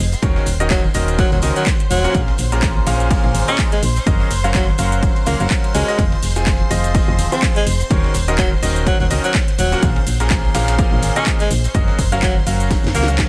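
A close-miked tenor saxophone carries the melody with a bright, vibrato-laden pop tone and a touch of delay, entering at 0.7 seconds in this soulful, energetic piano house passage at 125 BPM in Eb dorian. Beneath it, a brilliant concert grand piano plays a riff with deep bass, sidechain pumping and trailing delay, over chords that cycle through Ebm7, Bbm7, Gbmaj7 and Fm7. A solid FM bass sits round, dark and punchy with a fast, decaying attack, while a vintage string machine adds shimmering, soft-attack violin chords with ensemble chorus in the background. The groove swings lightly on the 16ths, driven by a punchy, overdriven electronic kick and a layered house kit with cracking snare, metallic hats, handclaps and shaker, both re-recorded in a large room. Acoustic tambourine and congas sit in a small room behind, a gritty, pitched-up breakbeat sampler kit ticks along very quietly, and a drum fill at 12.7 seconds closes this section cut from a longer piece, all set in a digital ambience.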